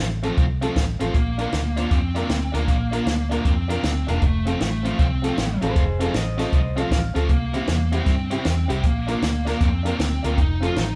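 Electric blues shuffle in F major at 156 BPM, swung and laid-back with a rollicking lilt, cut from a longer piece and played live in one room with light reverb. A compact cocktail drum kit sits up front, dry and natural, with a high-tuned snare, tight kick and hi-hat, while a vintage muted fingered electric bass, dark, round and foam-muted, holds the low end alongside it. A biting overdriven guitar carries the picked riff, and a honky-tonk upright piano adds detuned, jangly, bright accompaniment. From 1.2 seconds a lead guitar through a small cranked amp plays the picked melody with a warm overdriven edge. Between 5.6 and 7.2 seconds a second electric guitar through a small old amp slips in a brief, slightly broken-up line bathed in spring reverb. Across the excerpt the chords move from F to Bb, back to F, then on to C and Bb before settling on F.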